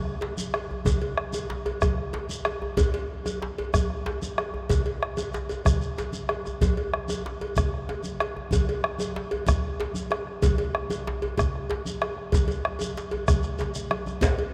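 A vast, echoing cathedral reverb surrounds this festive, driving West African drum ensemble, cut from a longer piece and moving at 126 BPM in a 12/8 metre with a straight feel. A round, up-front bombo anchors the groove alongside a tight, cracking djembe struck with hard hands, bright congas with a thin skin, a metallic cowbell and a grainy, mellow shekere. A drum fill arrives at 13.4 seconds, and a second djembe, deep and carrying metal rattles with a vintage, band-limited tone, joins briefly at 14.2 seconds.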